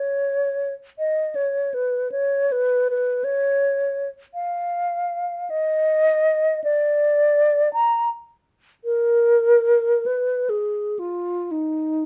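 Serene and nostalgic, this classical excerpt features an unaccompanied alto flute moving freely through a rubato 6/8 at roughly 36-57 BPM in dotted quarters, tuned to A4 = 441 Hz. The solo flute sits up front with an airy tone, vibrato and tongued, expressive phrasing across a range from Eb4 to Bb5. Light reverb surrounds the playing over its 12.1 seconds, cut from a longer piece.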